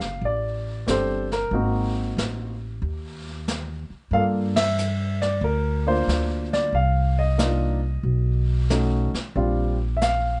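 From the first beat, a woody, up-front upright bass plays pizzicato under a warm, short-sustained baby grand piano melody and a softer brushed kit with dark cymbals, a relaxed, sophisticated jazz trio swinging at 92 BPM in 4/4 through rich chords such as F69, Gm7, Cm11 and Bb69, with a band accent at 4.5 seconds and a dry sound that gently rolls off the highs in this short fragment of a longer piece.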